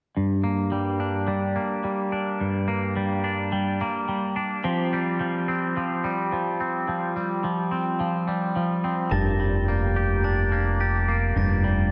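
A dreamy, reverb-soaked rock excerpt at 107 BPM glows with hopeful euphoria as an up-front twangy electric guitar picks phaser-and-tape-echo arpeggios over Gm from 0.2 s, a bright, chorused pedal steel drifts in behind with sustained chords on Fsus2 at 4.6 s, and at 9.1 s a mellow, bell-like glockenspiel played with rubber mallets and a growling, punchy overdriven fingered bass holding F1 join under Gmadd9/F.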